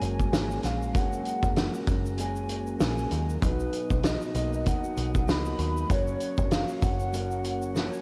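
A laid-back, nostalgic indie and bedroom pop excerpt in F# major opens at 97 BPM with a loosely swung 4/4 groove, as a warbling lead with a soft attack and lush chorus floats over a dark, slightly broken-up electric guitar through a small old amp, a mellow, flute-like tonewheel organ on slow rotary speaker, and a round, foam-muted dub bass. A roomy indie drum kit sits up front with a fat snare and tight kick, while a grainy tube shaker ticks in the background, all over chords moving from F#add9 to Bmaj7 and back to F#. The cassette home recording adds light small-room reverb, and the organ slips in a fill at 7.4 seconds, followed by a drum fill at 7.8 seconds.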